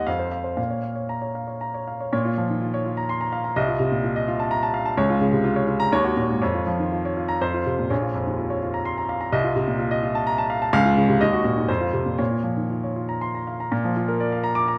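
A polished, up-front baby grand rings through a lush recital-hall reverb in this short passage from a passionate, agitated classical virtuoso piano study in 3/4, played solo with free, rubato timing. Spanning deep bass to bright upper register, the piano circles through restless minor harmonies until 13.7 s, when a brief new section lands on a major chord as the clip cuts off at 14.8 s.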